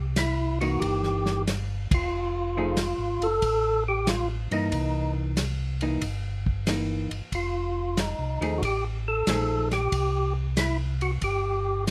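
A lightly reverberant sound frames this greasy, soulful soul jazz organ trio excerpt at 92 BPM with a swung 4/4 feel. A round, dark tonewheel organ carries the bass through chorus vibrato and slow rotary speaker, while a fat, lightly overdriven percussive organ with key click and fast rotary speaker plays the melody. A dry, lo-fi, muffled soul drum kit with dark cymbals and a tight kick keeps time, and a clean, compressed hollow-body electric guitar comps from 0.6 to 9.7 seconds over C7#9 and F7#9 chords, with a band accent at 1.8 seconds.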